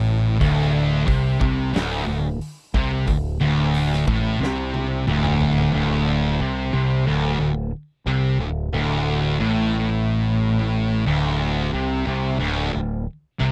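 Two thick, fuzzy guitars and an up-front, growling, overdriven fingered bass open this heavy, sludgy stoner and doom metal fragment on a D5 chord, joined at 0.4 seconds by a bright, compressed, double-tracked distorted guitar and a big, dark rock kit with a fat snare and punchy kick, whose fill from 4.4 seconds ends the drums at 5.7 seconds, while the guitars and bass carry on through the second section in a dry, close, 1970s-style studio sound.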